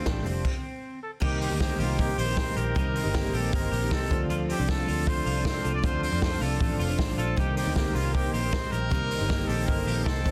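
This wistful, bittersweet excerpt of jangly indie pop opens with a clear, distant trumpet carrying the melody over picked steel-string acoustic guitar, a woody upright piano with audible action noise, and a bright twelve-string electric guitar shimmering with lush chorus as it plays arpeggios in the background. A moment later the vintage drum kit and a dark, foam-muted picked electric bass join in, and the band stops from 0.5 to 1.2 seconds before settling into a straight 4/4 groove at 156 BPM in C dorian. At 1.2 seconds a very quiet, smooth analog pad with a detuned sawtooth tone adds sustained chords up high as the harmony moves between Dm7 and Cm7. The drums sit up front with a punchy kick, a medium-tuned snare, hi-hat and crash, their top end rolled off in a natural studio-room sound, while the round, amped bass anchors the low end. The trumpet has a roomy, classical-style tone, and the whole is held in light reverb under a dense, heavily limited modern master.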